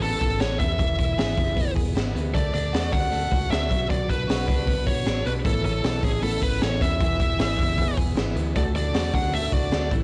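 A jangly indie pop excerpt in 4/4 at 155 BPM opens with a full band from the first second, its youthful, nostalgic mood carried over a straight feel and a chord cycle of Aadd9, E, D and Bm. A bluesy overdriven lead guitar sits up front with a warm, distorted, picked tone, carrying the melody between G#4 and F#5, while a bright, twangy twelve-string electric guitar spins compressed, clean arpeggios beneath it. A vintage muted picked electric bass gives a dark, round, foam-muted low end, and a raw garage drum kit of hi-hat, punchy kick and high-tuned snare is the most forward element, its muffled, rolled-off top and 12-bit sampler grit heard in a bright stone room. At 5.4 seconds a fingerpicked steel-string acoustic guitar joins in the background with a full-bodied dreadnought tone. The whole recording is dry and gritty with transformer saturation and only a light touch of reverb, giving it a raw, hardware-made character.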